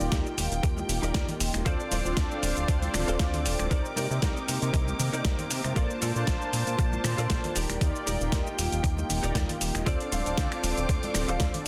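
Nu-disco at 117 BPM in 4/4 with a light sixteenth-note swing, this sleek, groovy clip is cut from a longer piece and rides a chord loop of Ebmaj7, Dm7, Cm9 and Bbmaj7. An overdriven electronic kick sits loudest, thumpy and re-recorded in a large room, entering at 0.1 seconds beneath a gritty, compressed sampler-style soul kit of hi-hat, medium-tuned snare, finger snaps and cabasa. Very quiet, ringing cabasa and congas played with soft hands add close acoustic texture. A chorused synth bass, glossy and dark with pulse-width modulation and a sawtooth edge, anchors the low end, while a round, detuned synth brass with vibrato, chorus and tape echo fills in the accompaniment. A clean, picked electric guitar, recorded direct and compressed, plays a riff through ensemble chorus and tape echo, and a lush, bowed studio string section holds sustained chords with a smooth top and sidechain pumping. 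Light digital reverb frames the parts, and the master is dense and heavily limited.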